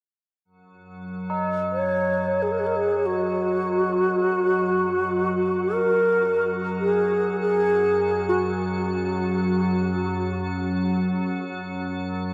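A bright xiao carries the melody up front, its bamboo tone airy and soft in attack, shaped by expressive vibrato across F#4 to C#5 and trailed by shimmer reverb and delay. The music is calm, spacious world meditation music in free time, set in F# major pentatonic with tuning at A4 = 437 Hz. Beneath it an icy glass pad holds a drone from F#2 to F#3, entering at 0.9 seconds with a slow attack and sustaining to 12.3 seconds; its crystalline sine tone is laced with a noise layer, chorus and its own reverb. Tubular bells add a solemn, metallic ringing on D#4, struck with a rawhide hammer and bathed in shimmer reverb, sitting quieter in the mix. The passage unfolds as one unbroken section inside a huge ambient reverb with a 9.0-second tail, giving the dark, warm production a vast sense of space, and it is cut from a longer piece.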